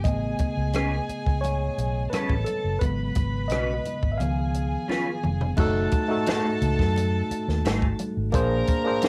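Smooth and silky, this 87 BPM 1970s-style soul excerpt in F# dorian features a worn, slightly out-of-tune tine electric piano soloing up front through a combo amp with plate reverb until 5.6 seconds. Around it sit a bowed, sul tasto chamber violin section with light vibrato, a round, punchy foam-muted fingered bass with transformer saturation, and very quiet, hard-handed congas. A dry cocktail drum kit with dark cymbals, a high-tuned snare and a tight kick carries a cassette-tape tint and plays a fill from 4.9 seconds. A twangy, slightly broken-up electric guitar riff with ensemble chorus enters at 0.7 seconds, and a ringing, bell-like glockenspiel appears briefly in the background from 5.6 seconds as the harmony moves from Amaj9 through G#m7 and C#7 to F#m69 and A#9, all captured as a home cassette recording with light reverb.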